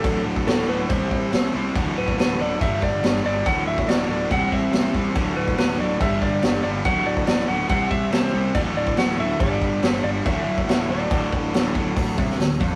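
A straight 4/4 groove at 141 BPM drives this swaggering, sunny classic rock excerpt in D mixolydian, where an up-front vintage drum kit with dark cymbals and a punchy kick backs a tight, bright distorted guitar riff, an overdriven guitar riff sitting in the background, a fuzz-laden picked bass, a barely audible lush string machine holding chords, and a dark, clean lap steel melody with slapback echo that plays until 11.7 seconds over chords cycling between D6, C and G, all captured as a rough rehearsal-room recording.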